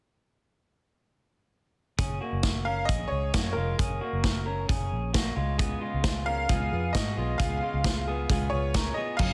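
A dense, heavily limited modern master with light reverb and studio ambience frames this short cut from a longer jangly indie pop piece, nostalgic and youthful in mood, moving at 133 BPM in a straight 4/4 in F# major. At 2.0 seconds the band arrives together: a vintage drum kit sits up front, saturated and gritty with dark cymbals, a medium-tuned snare, a tight kick and a rolled-off top, while a foam-muted, round vintage electric bass holds down the low end. Over them an electric guitar through a small old amp plays delayed arpeggios with a twangy, slightly broken-up, lo-fi tone. At 2.6 seconds a bright upright piano takes the melody, woody and intimate, slightly detuned, with audible action noise and long sustain. The harmony shifts from F#maj7 to C#7 at 5.4 seconds, and a full-bodied fingerpicked steel-string dreadnought joins as accompaniment just after, at 5.6 seconds.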